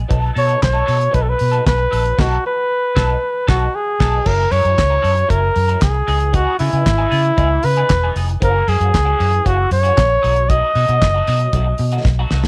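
A breathy flugelhorn carries the melody up front in a sultry, glamorous disco groove at 116 BPM, its jazz-inflected solo line colored by vibrato as it enters at 0.4 seconds. Beneath it, a foam-muted fingered electric bass gives a round, punchy foundation, while a 70s drum kit with a fat snare, tight kick and dark cymbals adds handclaps, hi-hat and crash in a dry, rolled-off sound. An electric guitar on the edge of break-up fills out the accompaniment with a picked, compressed part treated with wah and a subtle chorus. The band lands a shared accent before the music shifts at 4.3 seconds, moving through F#7, C#m9 and F#7 again before returning to B7. A drum fill closes this cut-down passage from a longer piece, all set in light reverb with a small-room ambience.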